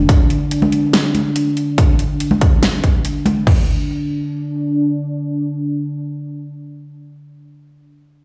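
Deep dubstep in a meditative, brooding half-time feel, opening on a dark, warbling pad of detuned sawtooth and sine voices with a sub octave, held on sustained chords through chorus and its own reverb until 6.7 seconds. Electronic drums sit up front with a punchy kick, huge snare, metallic hats, toms and crash, stopping by 3.6 seconds, while bright, thin-skinned congas with soft hands and dub echo join at 0.6 seconds. A lush hall reverb and the stony ring of a bare room played through a big sound system surround this brief excerpt cut from a longer piece.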